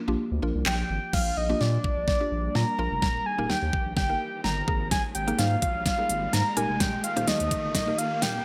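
A straight 4/4 pulse at 127 BPM drives this summery, upbeat dance-pop passage in Eb major, cut from a longer piece. An up-front electronic drum kit of knocking kick, fat snare, crisp hi-hat, handclaps and crash cymbal enters at 0.7 seconds. Underneath, a deep, saturated sine sub bass pumps with sidechain, while a woody, mallet-like FM pluck with a noise layer adds percussive accompaniment coloured by chorus, phaser and the same pumping. A very quiet, glassy FM pad holds ethereal sustained chords, and a soft octave-layered lead, round and detuned with vibrato, chorus and delay, carries the melody prominently. From 1.1 seconds the music becomes a build-up, with a drum fill and a filter sweep running across chords of Bb6, Eb and Absus2, and a background riser joins at 3.8 seconds. The bright 1980s-style digital production sits in light reverb with a high-pass filter.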